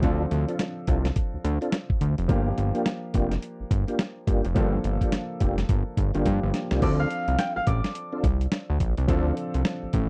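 A short, confident cut of new jack swing R&B opens with a punchy groove, as a gritty, sampler-style drum kit with a thumpy kick, medium-tuned snare, hi-hat and crash sits up front beside a fat, detuned sawtooth bass with a saturated filter pluck. Behind them, a baby grand piano plays natural-sounding accompaniment while a tonewheel organ adds lightly overdriven stabs with key click, chorus vibrato and a slow rotary speaker. The swung sixteenth-note feel and the harmony moving from Dm7 to Gm7 give the piece a confident, punchy bounce. A drum fill at 6.3 seconds leads into a new section at 6.8 seconds, where a thumb-plucked concert harp enters with a ringing, acoustic melody touched by slapback echo. The whole recording is dry and close, with the compressed, vintage 12-bit character of the drums giving it a dusty soul edge.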